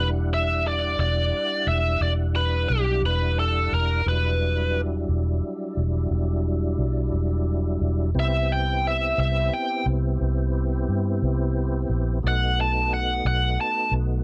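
Slow blues in E minor at 59 BPM in a straight 12/8, smoky and brooding, where a bright, overdriven lead guitar sings its melody up front over a tonewheel organ holding clean, key-clicking chords through a slow rotary speaker and chorus vibrato, anchored by a dark, round, foam-muted electric bass, all in light reverb as the harmony moves from Em9 to Cmaj7 at 8.2 seconds and B7 at 12.2 seconds in this short cut from a longer piece.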